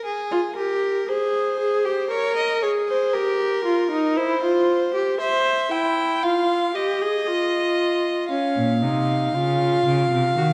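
A clear, bowed violin opens this solemn, contemplative baroque-style fugue in Bb minor at a slow 58 BPM, joined at 0.3 seconds by a viola of matching tone. Both play with smooth, even vibrato, sitting close and up front as the chords move from Fm through Gm and C/E. At 8.6 seconds a rich cello enters on the bass line over the Bbm harmony, its vibrato and portamento adding expressive weight, all set in a moderate scoring-stage reverb with a dark production.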